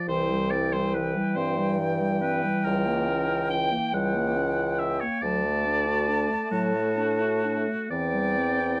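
An up-front bassoon with light vibrato and a soft attack anchors this serene, lyrical slow movement for wind quintet, a short passage cut from a longer classical piece in 6/8 with gentle rubato. Above it, an airy, metallic flute carries the melody. A clear, vintage-toned oboe sings a vibrato-laced second line, while a dark, distant clarinet and a warm, vibrato-tinged French horn fill in the accompaniment. The harmony moves from C through C#dim7 and D to C/E, and light reverb gives the whole ensemble a dusky, gentle glow.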